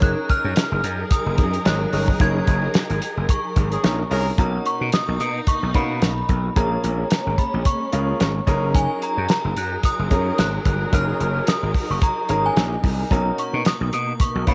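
A home cassette recording with moderate spring reverb and a small-room feel opens this smooth, feel-good slice of early-eighties boogie funk in F# major, moving at 110 BPM with a light sixteenth-note swing. Up front, a dry 70s drum kit with a fat snare and tight kick sits beside a growly, overdriven slap bass, while a chiming FM synth with chorus and tremolo carries the melody over clear grand piano, a lush, distant string section with portamento, and a very quiet, dark guitar riff. A roomy horn section adds a brief second line from 3.7 to 4.3 s within a band accent, before the harmony shifts to Bmaj7 at 4.4 s.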